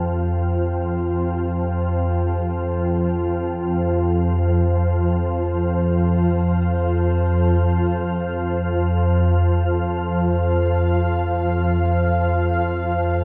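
Cavernous and dark, this dark ambient drone drifts in free time, an excerpt cut from a longer piece resting on a single Fsus2 chord. An organ-like drone, calm and detuned with ensemble chorus, sits up front in the low register while a deep, moody pad of warbling, vintage sawtooth tone with a sub octave and chorus fades in above it across the full 13.2 seconds, holding sustained chords. Both parts swim in a huge, wet reverb with a long tail, giving the dark production an enveloping, warm depth.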